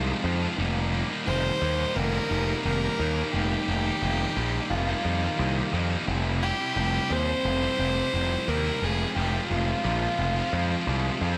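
Cathartic and melancholic, this short post-rock excerpt moves at a straight 88 BPM in 4/4, tuned slightly below standard pitch, with chords drifting from Fm7 through Eb/F and Csus4/F before settling on Fm. A thick, double-tracked fuzz guitar drives the riff up front alongside a growly, overdriven picked bass, both bright and distorted. Above them, a single bowed violin carries the melody with a soft, pure sul tasto tone, floating and distant through analog delay, all set in a small room with light reverb.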